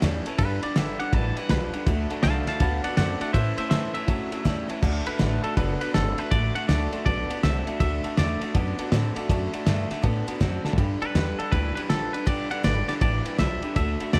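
A twangy electric guitar carries the melody from 0.4 seconds, its clean, compressed tone dressed in spring and plate reverb plus tape echo, while a clean electric guitar solo, which opens the cut, runs to 4.8 seconds. This is a retro, rowdy rockabilly excerpt in a swung 4/4, taken from a longer piece. Beneath the lead, a second electric guitar plays a riff through a small old amp, sounding slightly broken-up and lo-fi, while a woody pizzicato upright bass thumps out the low end on gut strings. The cloth-damped drum kit sits up front with a fat snare, tight kick and dark, muffled cymbals in a small, gritty room sound, and a drum fill lands at 10.6 seconds. Further back, a full-bodied steel-string acoustic guitar with audible finger squeak and a brilliant upright piano with short sustain fill out the accompaniment, both touched by plate reverb. The chords move from G to D to A before the second section begins on D at 4.8 seconds.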